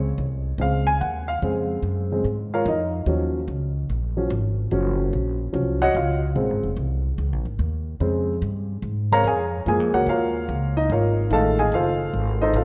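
Dramatic and brassy in spirit, this short swing excerpt cut from a longer big band jazz piece moves at 146 BPM in 4/4 with a 67% swing on the eighth notes, set in B-flat minor. An upright piano carries the accompaniment throughout its 12.6 seconds, ranging from Db3 to Bb5 with a woody, up-front presence, and the passage is heard as a piano solo. Beneath it, a plucked upright bass with steel strings gives a thumpy, acoustic low end between F1 and Ab2, sitting close and present in the mix. The harmony rests on Bbm7 before shifting to Gbmaj7 at 9.7 seconds and landing on a tense F7#9 at 11.3 seconds. A moderate concert hall reverb surrounds the pair, lending the small group a sense of space.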